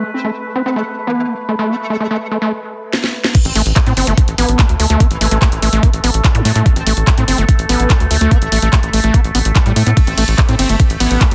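A squelchy, distorted acid bass riff drives this hypnotic psychedelic trance excerpt, its filter sweeping through the opening 3.3 seconds over a nasal, chorused drone with moving overtones and a metallic FM wobble bass pumping quietly in the background. After a fill from the small-room drum kit at 2.9 seconds, the drop hits at 3.3 seconds with an overdriven, knocking kick up front beneath that kit's cracking snare, bright hats, ride, crash and handclaps, and a tight, punchy sawtooth sequencer bass joins at 3.5 seconds. A very quiet electronic zap flickers at 6.3 seconds, all within a dense, heavily limited modern master.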